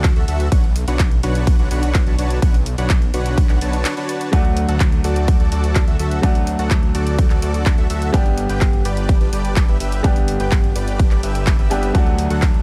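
This short cut from a festival-ready progressive house track opens at once with a huge, thick supersaw riff in D major, pumping with sidechain compression and trailed by delay. Underneath, a detuned saw bass with a lush chorus sheen fills the low end, while a punchy, overdriven electronic kick sits up front at a steady 126 BPM in straight 4/4, joined by a layered big-room kit of handclaps, hi-hat and ride cymbal. The chords move from D to Bmadd9 before a brief break at 3.9 seconds, after which a bright, brilliant baby grand piano enters at 4.3 seconds with long sustain, pumping and echoing alongside the riff. The harmony then settles through D and G before returning to D near the end. The mood is uplifting and euphoric, set in a dry, dark and warm production.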